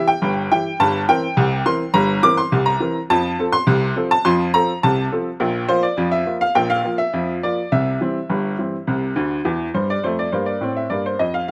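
A clear, woody upright piano plays solo through this short cut from a longer cheerful, lively ragtime piece in F major, moving at 104 BPM in a straight 2/4. Its slightly detuned, natural tone with short sustain sits up front under light reverb in an open outdoor setting, ranging from G1 to D6 as the harmony passes through C, C7/G, F, Bb5 and C. A piano fill at 9.2 s leads into a new section at 10.0 s that lands on F, and the piece is cut off at 11.5 s.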